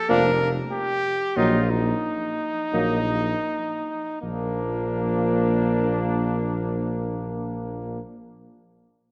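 A trumpet opens this stately, triumphant excerpt of a classical brass quintet in Bb major. At 0.1 s the rest of the group joins, and all five parts play to the end of the eight seconds. The trumpet carries the melody up front with a smooth top and light vibrato, while the clear flugelhorn adds a vintage-tinged second line, also with light vibrato. French horn and euphonium share a mellow accompaniment from the background, the horn holding Bb3 with light vibrato. A dark, punchy tuba anchors the bass up front. The rubato pulse moves between 77 and 96 BPM in 4/4 and slows through the opening section, with harmony shifting from Bb5 to Ebm/Bb before a new section settles on Bb at 4.2 s. A wet concert hall reverb gives the ensemble a resonant, spacious sound.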